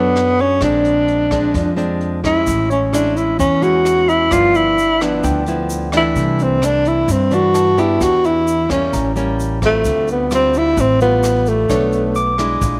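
A light reverb gives this short bossa nova cut from a longer piece a sunny, sophisticated glow, moving at 130 BPM in a straight 4/4. Up front, a breathy tenor saxophone carries the melody in a dark, whispered subtone, with vibrato, scooped notes, soft attacks and a smooth top that make it feel intimate and jazz-inflected. A fingerpicked nylon-string guitar plays classical-style accompaniment beneath it, while a pizzicato upright bass with steel strings adds a woody, warm low end. In the background, a brushed drum kit with a punchy kick, hi-hat and rim click begins at 0.2 seconds, and a grainy tube shaker joins at 2.5 seconds. A barky tine electric piano, lightly overdriven through a combo amp, enters at 2.7 seconds with bright high accompaniment. The harmony drifts through rich chords such as Bm9, Amaj7, G13, C69 and A7b9 before returning to Bm9.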